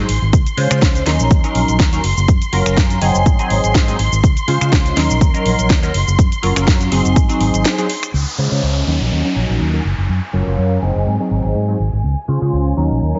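A funky, feel-good filtered disco house excerpt in Db major at 123 BPM, swung on the 16ths, opens on a punchy, detuned sawtooth polysynth comp with chorus and phaser, a lush bowed violin section holding high vibrato chords, and a dark, round fingered electric bass, all three pumping under sidechain and a low-pass filter, while an up-front overdriven electronic kick joins a house kit of finger snaps, shaker, bright hats and a cracking snare until a short break, after which the kit stops at 8.1 seconds as a downlifter enters and a filter sweep runs through the final Dbmaj7-Ebm7-Gbmaj7-Ab7 pass, heard through a heavily compressed, radio-like sound with light reverb.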